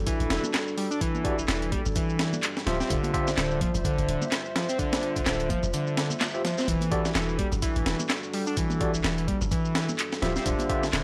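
A dry, gritty hardware recording with light reverb carries this energetic, gritty breakbeat cut, where a compressed sampler-style kit with a thumpy kick and high-tuned snare sits up front beside a screaming, guitar-like overdriven synth lead riff through tape and analog delay, while a boomy 808-style bass, a moody detuned analog pad pumping under sidechain, electronic shaker and handclaps, and warm background congas fill out the groove, and an amp-driven tine electric piano with fast tremolo stabs in at 1.2 seconds and returns at 6.3 seconds.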